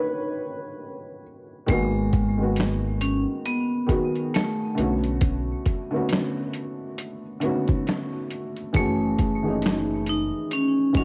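Lo-fi hip hop with a reflective, hazy mood, cut from a longer piece, in which a dark, slightly detuned upright piano with audible action noise plays alone until 1.7 seconds, when a bright, ringing vibraphone struck with hard mallets takes the melody over woody pizzicato upright bass and a muffled, overdriven sampler-style drum kit with a thumpy kick and 12-bit grit, with cassette-tape coloring on the piano, vibraphone and drums and light reverb around the home recording.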